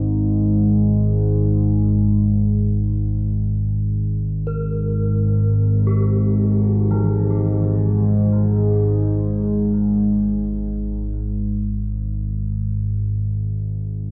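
Dark ambient drone in free time, desolate and ominous, where an up-front, warbling analog synth drone with lush chorus and a filter sweep sustains through the excerpt while a bronze gamelan-type metallophone rings out dark, shimmering arpeggios with delay and shimmer reverb from 4.5 to 7.9 seconds, all bathed in a long cathedral reverb with muted highs before the fade-out from 12.7 seconds.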